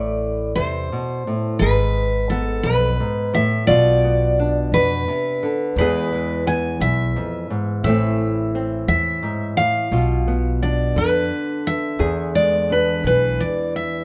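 Intimate and haunting, this acoustic folk passage for a small band moves in a straight 6/8, cut from a longer piece. A bright, full-bodied picked steel-string guitar carries the melody up front, while a small, fingerpicked nylon-string guitar sits just as close with warm accompaniment. A woody, dark pizzicato upright bass anchors the low end until 13.4 seconds, and a light reverb lends the trio a gentle sense of space.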